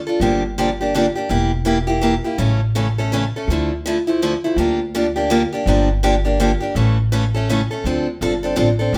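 A bright, boxy picked steel-string acoustic guitar sits up front, picking out the accompaniment through a fiery, virtuosic slice of jazz manouche in a swung 3/4 at 165 BPM, moving through Gm7, Edim and A before settling on Dm7 when a new section arrives at 7.8 seconds. Beneath it, a woody, thumpy pizzicato upright bass on gut strings enters at 0.2 seconds and holds down the low end, while a moderate studio reverb places the pair a little further back in the room.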